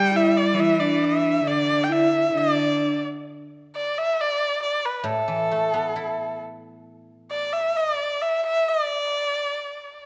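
Festive yet pastoral, this short cut from a longer Chinese traditional chamber piece is led by an up-front, focused erhu that carries the melody with vibrato and portamento and a boxy tone. For the first 3 seconds a distant, breathy, hollow xiao and an earthy cello with an airy bow add a second line beneath it. A silvery, ringing guzheng played with fingerpicks plucks accompaniment at the very start and again from 5.0 to 7.8 seconds, all set in a wet recital hall reverb.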